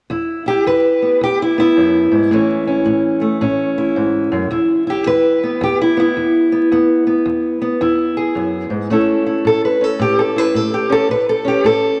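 A fingerpicked parlour steel-string acoustic guitar sits up front, dark and boxy, carrying this swaggering, soulful acoustic country blues alone in E major at 109 BPM with a swung 4/4 feel. Analog delay trails the guitar's lines, while a long plate reverb soaks the whole dreamy mix and vinyl crackle adds a worn patina. The chords move from E5 to A at 2.3 seconds, back to E, then to A again at 8.9 seconds in this short cut from a longer piece.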